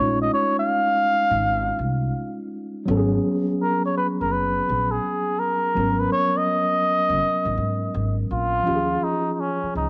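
A cup-muted trumpet carries the melody up front in this smoky, cool jazz-hop excerpt, soloing from the start until 8.7 seconds with a soft, veiled tone, gentle attack and light vibrato. Beneath it, a mellow tine electric piano plays clean, warm accompaniment heard through its built-in speakers, moving from a rootless Bbm11 to Abm11 at 2.9 seconds. An acoustic upright bass with gut strings supplies a woody, thumpy pizzicato low end. The groove sits at 83 BPM in 4/4 with a swung sixteenth-note feel, and the harmony shifts to Eb9sus4 as a new section begins at 8.7 seconds. Both the trumpet and the electric piano carry a cassette-tape colour, and light reverb adds a touch of space to the whole home recording.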